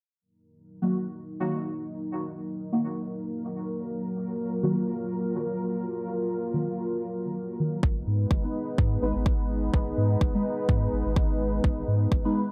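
A lightly swung 4/4 pulse at 126 BPM drives this hazy, cavernous dub techno excerpt in Eb minor, where a moody, sawtooth-edged analog pad with slow attack and chorus sustains chords from 0.2 s beneath dark, wave-folded, detuned chord stabs carrying phaser, dub echo and a filter sweep, both pumping from sidechain compression, before a round, soft triangle-and-square sub bass and a layered, up-front electronic kick arrive at 7.8 s as the harmony moves from Ebm to Abm, all set in a light reverb.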